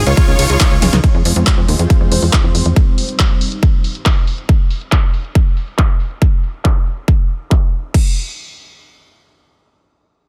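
Uplifting trance, euphoric and soaring, opens on a drop in which a huge, bright, detuned supersaw lead with tape echo, a very quiet plucky unison lead with vibrato, a round analog pluck playing arpeggios and a lush, thick pad with chorus and phaser sound together, while the lead, pad and tight sequencer bass pump with sidechain. A punchy, overdriven electronic kick sits up front beside an overdriven analog drum machine with handclaps, snare, hi-hat, ride and crash, both running to 8.0 seconds, and a drum fill lands at 0.8 seconds. From 1.0 seconds, filter sweeps move over the drums, bass and pad as the harmony shifts from Fm to Cm in a close, nearly reverb-free mix before the chords fall away.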